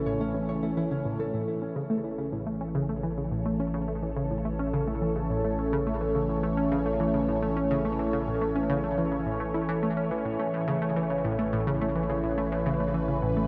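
A round, detuned analog pluck sits up front, playing a riff through chorus and tape echo. It drives this expansive, cosmic piece of sequencer-driven ambient space music at 106 BPM in a straight 4/4, centred on A and tuned to A4 = 443 Hz. Alongside it, a swirling, evolving sawtooth pad with phaser and chorus holds sustained chords, a deep sine sub bass anchors the low end, and a mellow, fingerpicked concert harp rings out arpeggios through tape echo until 3.8 s, all of it bathed in a huge, wet reverb and the warbling pitch drift of worn cassette tape in this excerpt cut from a longer piece.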